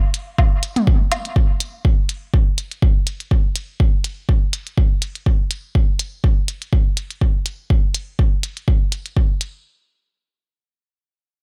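A dry, close-up sound opens this short techno fragment, cut from a longer piece, with little reverb and a clinical, hypnotic mood. At 123 BPM in 4/4, the groove carries a light 56% swing on the sixteenths. A deep electronic kick drum sits up front, re-recorded in a small room, and anchors the pattern from 0.4 s to 9.3 s. Clicky electronic hi-hats, also close and upfront, run quietly from 0.1 s to 9.5 s. Briefly, between 0.4 and 1.2 s, a layered electronic woodblock and toms figure appears with a tape-warm tone, trailed by a diffuse ambient delay. The whole passage stays in a single section, pared down to drums and percussion.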